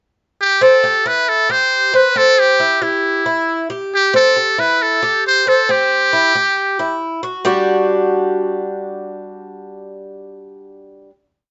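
A straight 4/4 Latin groove at 136 BPM sets a relaxed, danceable mood for this short, complete piece. A buzzy trumpet with metal mute, close-miked and up front, carries a motif-based jazz melody with light vibrato and scooped notes over a C montuno vamp until 7.0 seconds. Alongside and beyond it, a mellow, double-strung Cuban tres picks an arpeggiated guajeo and rings on through a final G5 chord from 7.5 seconds, all set in a moderate studio reverb.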